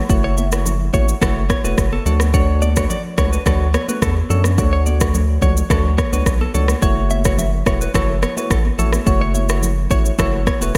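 Bright, 1980s-style digital production with light reverb frames this hypnotic, mellow afrobeats excerpt at 107 BPM in F# minor, moving from F#m7 to Dmaj7 and back. An overdriven deep house kit with a deep kick, rim click and shaker sits up front with gated reverb beside a round analog bass, while soft, warbling electric-piano-like synth keys with chorus fill in the harmony. A clean, direct-recorded electric guitar picks a compressed riff through digital delay, and high-tuned congas with a thin skin sit in the background from 0.4 seconds.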